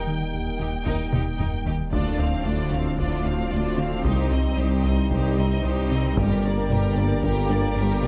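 A punchy, wave-folded analog bass riff drives this relentless, vast passage from a hybrid orchestral and electronic film score, sitting in the background over a deep, round sine sub bass. A rich, expressive violin section carries the melody with vibrato. A second violin line sits distant and lush beneath it, and a viola section adds expressive bowed accompaniment. An evolving analog drone with a slow attack and chorus holds very quiet sustained chords, while very quiet cellos and double basses reinforce the low end from 0.6 seconds. Vintage, band-limited taiko drums struck with hard sticks come in at 0.9 seconds, and a fill leads into the next section at 1.9 seconds. There, a bright trombone section, mellow French horns and a present solo tuba join with very quiet sustained chords and bass, all set in a moderate recital hall reverb.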